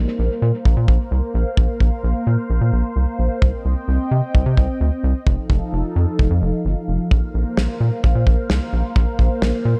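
Cool and nocturnal, this cut from a longer synth-pop piece moves at a straight 130 BPM in 4/4, with a swirling, detuned analog pad sustaining chords through phaser and chorus over a rubbery, hollow square bass with a dark filter pluck sitting up front, while a damped 70s drum kit with a tight kick, medium-tuned snare and rolled-off top enters at 0.7 s, all set in a small, echo-heavy room as the harmony cycles from Bbsus2 to Cm and F7 before returning to Bbsus2.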